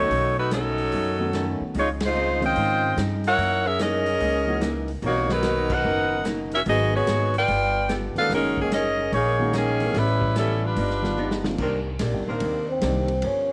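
Brassy and sultry, this big band swing excerpt moves at 146 BPM in 4/4 with a swung feel, led by an up-front, clear saxophone section with light vibrato over pizzicato upright bass with a woody tone, a dark, smooth drum kit with dark cymbals and a punchy kick, and a background grand piano with audible action noise alongside a clean, compressed hollow-body electric guitar. Band accents land at 2.0 and 5.6 seconds, and the harmony drifts through rich extended chords like C#maj9, F#13 and G7b13 in a small room with light reverb. After a drum fill, a mellow saxophone section holds soft-attack chords from 11.6 seconds, and a cup-muted trombone enters at 12.0 seconds for a breathy, veiled, whispered solo with scooped notes.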